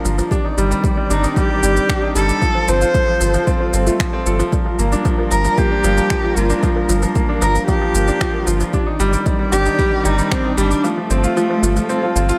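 Lightly reverberant and close, as if in a small room, this hypnotic, cinematic piano and strings electronica piece, cut from a longer work, places a clear, polished concert grand riff with tape echo up front. Beneath it sit a deep, round sub bass and an intimate sul tasto chamber string section, both pumping to a sidechain, while a soft, detuned pluck with chorus plays very quiet arpeggios and overdriven electronic shaker, finger snaps and a punchy layered kick keep a straight 4/4 pulse. A rich, focused solo cello carries the melody from 1.1 seconds, and the kick drops out at 10.8 seconds as the harmony returns to F/G.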